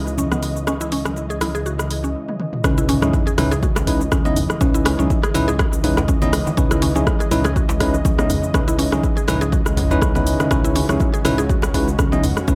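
Steeped in echo and light reverb, this excerpt of spiritual, earthy afro house moves at 122 BPM in C# minor with a gentle 16th-note swing, opening on a C#m9 chord. A smooth, warbling analog pad with subtle chorus and sidechain pumping sits in the background beneath bright, bell-like tine electric piano stabs roughened by vintage 12-bit sampler grit, low-pass filtering and analog delay. A dark, detuned saw bass rumbles on C#2 with pumping, while woody, round mallet-like synth plucks spin chorused arpeggios through delay, and a deep house kit of cabasa, hi-hat, rim click and toms ticks in a small room with very quiet congas. After a drum fill, the drop lands at 2.6 seconds with a punchy, layered electronic kick and a very quiet sub drop impact. A deep, close and dry djembe joins at 3.0 seconds to thicken the earthy percussion bed.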